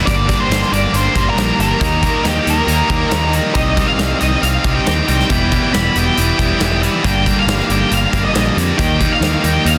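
Brooding and dark, this 138 BPM quiet-loud alternative rock excerpt in G minor pairs an up-front, scooped high-gain guitar riff and a dark octave-fuzz lead melody with a clean, compressed semi-hollow guitar playing arpeggios through spring reverb and analog delay, a growly direct picked bass, and a big-room acoustic kit with a punchy kick and medium-tuned snare, all moving through Gm, Eb, Cm and Em in a dense, heavily limited modern master.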